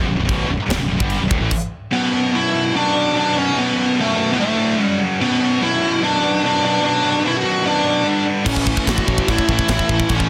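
A straight 4/4 pulse at 147 BPM drives this aggressive, relentless heavy metal excerpt in B minor, tuned slightly sharp to A4 = 443 Hz. It opens with a dense wall of riffing: three distorted high-gain guitars, one scooped and double-tracked, sit over a growling, overdriven picked bass and a tight metal drum kit with bright china and crash cymbals, a high-tuned snare and a tight kick. Everything drops out at 1.5 seconds except the up-front rhythm guitar, and at 1.9 seconds a bright, picked lead guitar enters with a melody. The chords move from Bm through D5 and F#5 back to Bm, then G5 and A. The rest of the band crashes back in at 8.5 seconds. Light reverb and a polished, heavily limited modern master keep the sound compact and forceful.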